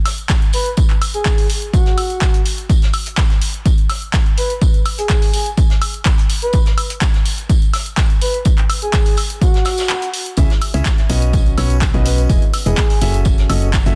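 This excerpt has a dense, heavily limited modern sound with little reverb, carrying a bittersweet yet energetic piano house groove at 125 BPM in 4/4, in C# minor. A punchy, tape-warm electronic kick sits up front, joined by an analog drum machine playing handclaps, hi-hat and woodblock, while a dry, mid-forward soul kit with a fat snare, hi-hat and tambourine stays in the background with its top rolled off. A breathy, flute-like synth lead with soft attack, vibrato, subtle chorus and digital delay carries the melody between F#4 and B4. After a short break at 9.9 seconds, the piece opens up at 10.4 seconds as a clear, vintage concert grand piano riff and a round, mellow FM bass enter, both pumping with sidechain, the piano also touched by digital delay. A very quiet tambourine arrives at the same point, and the harmony moves through C#m, Badd9, Emaj7 and F#m7.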